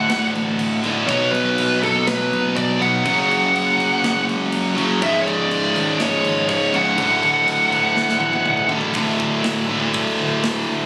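Captured on a phone in a club-like room and compressed, this relentless, epic heavy metal excerpt opens in a half-time feel, with a dark, high-gain lead guitar carrying the melody up front until 8.7 seconds over an overdriven rhythm guitar riff, a very quiet scooped high-gain guitar also playing a riff, and a growly, fuzz-laden picked bass. A tight, polished drum kit with bright cymbals drives the groove on kick, snare, hi-hat, crash and toms, and it moves into a fill from 8.0 seconds that leads the music into a new section at 9.0 seconds, where the guitars and bass carry on.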